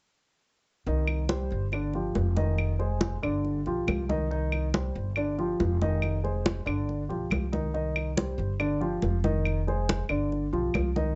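Afro-Cuban jazz with a driving, sultry mood, this short cut from a longer piece moves in a straight four-beat feel. A dark, mellow baby grand piano sits up front as accompaniment, its long sustain coloring a repeating cycle of Cm, G5, Fm7 and G7 that turns over roughly every three and a half seconds. Beside it, a growly pizzicato upright bass with steel strings holds down the low end, also placed up front. Ringing, medium-tuned congas sound close and dry, while woody claves enter at 1.1 s and keep a close presence just beneath them. The sound carries light reverb and a soft, rounded top, and the piano, bass and congas all run together from 0.9 s to about 11.2 s.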